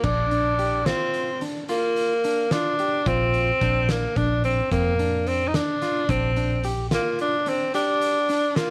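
Progressive instrumental band music in 11/8 at 218 BPM (eighths) in Bb major, intricate and driving, where a clear, up-front tenor saxophone with light vibrato carries the melody over dark, clean electric guitar arpeggios, a round, foam-muted vintage electric bass that drops out at 7.0 seconds, and a gritty, saturated, oversized, low-tuned drum kit with a boomy kick, fat snare and dark cymbals, all in a moderate plate reverb and small room ambience, moving from Bb to Gm/Bb at 6.1 seconds in this fragment of a longer piece.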